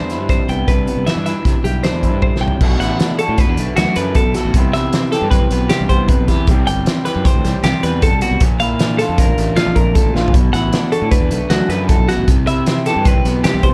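A bright, twangy twelve-string electric guitar spins compressed arpeggios from the very start, alongside a picked electric guitar through a small old amp that sounds slightly broken-up and a growly, fuzz-overdriven fingered bass. A loose indie drum kit arrives a moment later and sits up front, with a fat snare, boomy kick, dark cymbals, hi-hat and toms in a pumping studio room. This wistful, intricate piece of math rock and midwest emo moves in an off-kilter 5/4 with a straight feel, opening on a Cmaj9 before a drum fill leads into the main section at 2.6 seconds. From there the harmony drifts through Bm7, Cmaj7, a rootless Am7 and Bbmaj7, with another drum fill at 10.2 seconds before the chords return to Bm7 and Cmaj7. Light reverb and a dark, warm production give the short passage, cut from a longer piece, a hazy, intimate glow.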